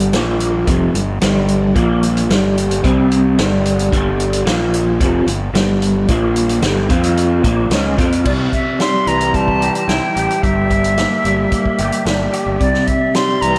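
Psychedelic rock with a mysterious, hypnotic pull at 111 BPM in G dorian, where a bright, twangy electric guitar riff through a small old amp and rotary speaker leads up front over dark, round fuzz bass with overdrive and a vintage drum kit of punchy kick and dark cymbals, and at 8.3 seconds an airy silver concert flute with vibrato and delay joins them with the melody, the whole dreamy mix soaked in cathedral reverb.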